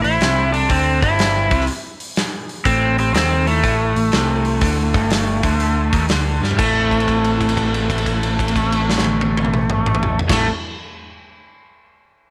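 Caught in a small room with light reverb, this gritty, brooding slice of swung blues rock with a southern rock edge is cut from a longer piece. An up-front slide guitar carries the melody with a warm, overdriven tone, while a slightly broken-up, compressed lead guitar traces a quiet second line and a bright, double-tracked electric guitar drives the riff in the background over a growly, punchy picked bass. The acoustic drum kit sits forward with a tight kick and rolled-off top, marking a fill at 6.3 seconds before a held note stretches from 6.6 to 10.2 seconds.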